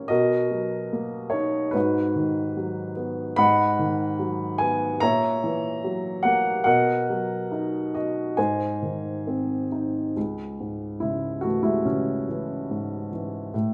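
Classical solo piano in a reflective, melancholic vein, this short excerpt is taken from a longer piece and moves at an unhurried pace with a flexible, rubato feel. A single dark, mellow baby grand sits up front in a recital hall of moderate reverberation, drifting through Bmaj7, G#m7 and F#7/A# before resting on G# and then turning to C# minor at 10.2 seconds for a new section. The lyrical line stays entirely with the piano across its range from C#2 to B5, lending the passage an intimate, introspective character.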